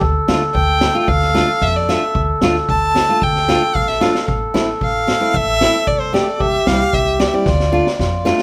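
A moderate studio reverb lends space to this soulful, festive klezmer excerpt, where a warm, bowed violin sits up front carrying the melody with smooth, even vibrato from 0.5 s. Beneath it, a reedy, round accordion holds a mellow second line, a bright, fingerpicked nylon-string guitar supplies classical-style accompaniment, and a woody, thumpy pizzicato upright bass on gut strings anchors the low end. A street-band drum kit with a high-tuned snare, boomy kick and rolled-off top plays throughout and closes with a fill at 7.5 s.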